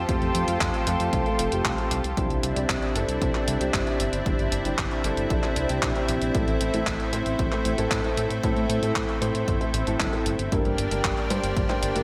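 The recording has a light reverb around it, with a bright, detuned unison pad sitting up front and treated with chorus. This 12-second cut from a longer italo disco track moves at 115 BPM in a straight 4/4, tuned to A4 = 439 Hz, and its mood is melodramatic and bittersweet. The pad holds sustained sawtooth-and-square chords with a slow attack and long release, moving through Fadd9, Cadd9, Am and Gm. Underneath, a fat, thick analog bass with a sawtooth tone, a fast attack and a filter sweep carries the low end. A dark, mellow baby grand piano plays stabs with long sustain, colored by tape echo. The drums pair a clean 12-bit sampler-style machine, playing handclaps and hi-hat with gated reverb in a small room, with a punchy analog kick re-recorded in a large room that stops at 11.7 seconds.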